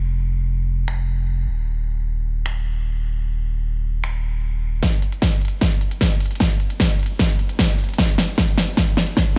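A deep, thick sub bass with a triangle-like tone and fast attack opens this lush, bittersweet future bass track at 152 BPM in a half-time feel, sustaining low and up front with sidechain pumping. At 0.9 seconds an up-front, layered dance drum kit enters with finger snaps, crisp hats and a huge snare, all set in a digital ambience. At 4.8 seconds the bass stops and a punchy electronic kick joins the kit for a build-up and drum fill before the cut from the longer piece.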